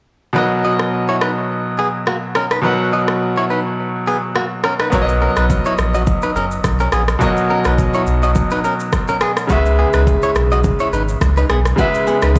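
A brilliant, polished grand piano sits up front in this breezy, joyful afrobeats excerpt, its long-sustaining tone carrying the accompaniment in B major at 105 BPM with a light 16th-note swing and tuning set to A4 = 436 Hz. A clean, twangy electric guitar recorded direct plays a compressed, picked riff through tape echo. An electronic afro-pop kit supplies a deep kick, rim click and shaker, with soft clipping on the snare, and a short break arrives at 3.8 seconds. At 4.9 seconds a full, mellow sine sub bass with an octave enters up front, its fast attack and sustained tone anchoring the second section as the harmony moves from Bmaj7 to C#m7 at 9.5 seconds. The mix has a blown-out, overdriven character, set in light digital ambience and studio reverb.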